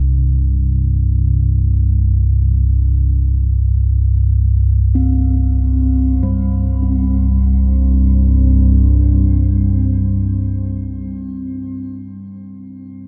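Dark, cavernous production steeped in huge ambient reverb and flecked with lossy compression artefacts frames this desolate ambient fragment, where an ominous, detuned, wave-folded drone rumbles up front until 11.0 seconds, and a metallic bronze singing bowl, sounded with a suede striker in a boxy small room, rings out meditative arpeggios through delay and shimmer reverb from 5.0 seconds, its slow beating lingering alone to the close.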